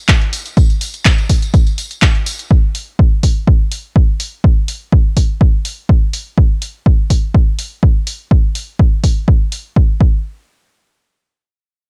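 This gritty, driving acid house excerpt rides a steady 124 BPM pulse in 4/4, with a light swing on the sixteenths. A punchy electronic kick drum sits up front from 0.1 seconds, its analog, tape-softened thump anchoring the groove until about 10.1 seconds. Alongside it, an analog drum machine supplies handclaps and hi-hat, also close in the mix and carrying the same cassette warmth, before dropping out near 9.6 seconds. A jingly acoustic tambourine, close and dry but tucked into the background, adds a warm shimmer only through the first 2.5 seconds. The whole recording has a dry, rough hardware character with a touch of digital ambience, and the brief closing stretch after 10.2 seconds hints that this is a fragment lifted from a longer track.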